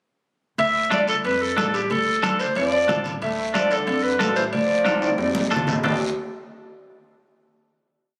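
A fiery, driving cumbia in D dorian opens at 0.6 s at 183 BPM, with a bright, forceful clarinet playing motif-based call phrases up front over woody pizzicato upright bass, off-beat congas with a thick skin, a raspy, dry guiro and distant, ringing timbales with bell, soon joined by a clean, twangy electric guitar picking triad chords. A growling, gritty trombone enters at 2.6 s with a harmony line mostly in sixths, and after a drum fill the piece lands on a final chord at 5.8 s. It was caught on a phone in the room, with club reverb and compression.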